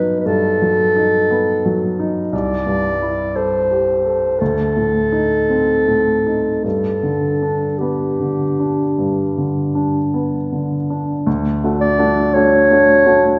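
Heard from further back in a wet recital hall with a softened top end, this short cut from a longer lyrical romantic classical duo finds a mellow, punchy clarinet singing the solo melody up front while a clear, polished baby grand piano accompanies in a flexible rubato, both playing throughout.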